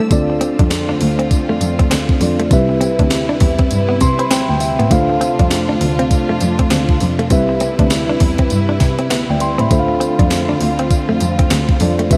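A gated 80s digital drum machine sits up front in this confident, bouncy new jack swing groove, its thumpy kick and gated reverb snare joined by handclaps, hi-hat and tambourine with a sampler-style, tape-warm character. The track moves at 100 BPM in 4/4 with a swung sixteenth feel, in D dorian, alternating between Dm7 and Cmaj7 across this short excerpt. A muted cello carries the bass line, bowed by one player with a veiled, boxy tone, soft attack, vibrato and portamento. A mellow tine electric piano supplies clean accompaniment through its built-in speakers and plays a fill from 3.7 to 4.9 seconds. A studio string section holds intimate, smooth-topped sustained chords played sul tasto with vibrato, while a picked, compressed electric guitar, recorded direct and bathed in lush chorus, repeats a riff in the background. A huge ambient reverb with a 5.2-second decay soaks the mix, giving the whole R&B piece a dreamy haze.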